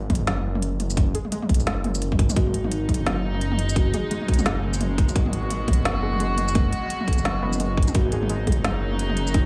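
Half-time drum and bass at 172 BPM in G# minor, heavy and tense, with 59% swing on the sixteenths, cut from a longer piece and opening on a G# minor chord. A tight, layered electronic kick sits up front beside a detuned saw bass that rumbles deep and beats in its low register, dark, saturated and sustained. A produced drum kit adds a woody snare, crisp hats, shaker and toms, all overdriven. From 0.3 s a lo-fi, warbling pluck plays arpeggios in the background, its chorus, 12-bit sampler grit and tape echo giving it a dusty, decaying edge. At 2.4 s a chamber string section enters with bowed sustained chords of reedy, gut-string tone and light vibrato, pumping with sidechain, while a mellow, round soft-mallet marimba with tape echo offers brief melodic phrases, returning near 7.9 s. A light, small-room digital ambience frames the mix.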